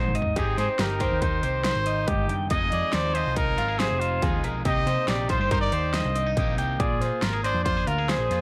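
Intricate and wistful, this math rock and midwest emo excerpt in 5/4 opens with a short drum fill from a punchy, metallic-hatted electronic dubstep kit before a clear, up-front trumpet enters at 0.4 seconds with a vibrato-laced pop-style melody touched by slapback echo. Beneath it, a twangy electric guitar at the edge of break-up plays accompaniment while a second, lo-fi guitar through a small old amp spins bright fingered arpeggios with a warbly pitch drift, all anchored by a dark, round hollow-body bass. The chords move from Abmaj7 through Fm7 and Cm7 to Bb9, set in light reverb.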